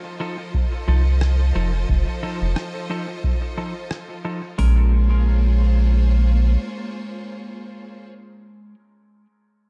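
The round analog bass stands out most, sitting up front with a deep, nasal, sine-like tone that enters at 0.9 s and sustains beneath this hazy ambient dub excerpt in Bb minor at 89 BPM, with a gentle 16th-note swing. A clear studio string section holds bowed, focused chords with vibrato from the very start, moving from F7 to Bbm7 at 4.6 s. A semi-hollow electric guitar plays clean, compressed stabs through spring reverb, a low-pass filter and dub echo, lingering until 8.7 s. A booming analog drum machine supplies a deep kick and metallic hi-hats with a tape-warm character, while a muffled, pitched-down electronic rim click sits in the background, trailed by its own dub echo. The whole excerpt is wrapped in a digital ambience that suits its deep, hazy mood.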